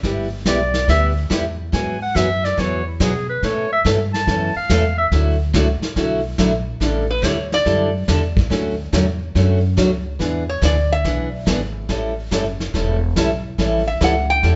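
A roomy, live-in-one-room sound with a darkened top end frames this swinging, playful western swing at 142 BPM, where a full-bodied picked acoustic guitar, a woody, thumpy upright bass and a vintage brush kit carry the groove while a bright, forceful clarinet with light vibrato solos from 0.5 s, giving way to brief nasal, metallic phrases from a resonator slide guitar played with fingerpicks starting at 7.1 s.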